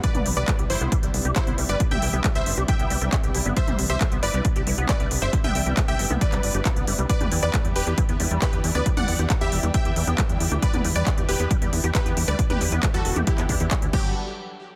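This excerpt of uplifting, euphoric trance opens straight into the drop at 136 BPM in a straight 4/4, with a punchy, tape-warm electronic kick drum sitting up front beside a techno drum kit of crash cymbal, handclaps, smooth hi-hat and toms, its snare softly clipped. A tight, driving sequencer bass enters at 0.1 seconds, its sawtooth and square-wave tone roughened by ring modulation and tube saturation and pumping against the kick. Over this, a detuned supersaw stab carries the melody with a fast filter-plucked attack, digital delay and sidechain pumping, while a very quiet unison pluck traces a second line alongside it. In the background, a squelchy, resonant acid bass spins arpeggios through filter sweeps, ensemble chorus and delay, and a thick, airy pad with a noise layer holds sustained chords. The harmony moves from Cmaj7 to Em7 at 7.1 seconds and touches Gmaj7 at 13.9 seconds, tuned to A4 = 439 Hz, in a dry, dense and heavily limited modern mix.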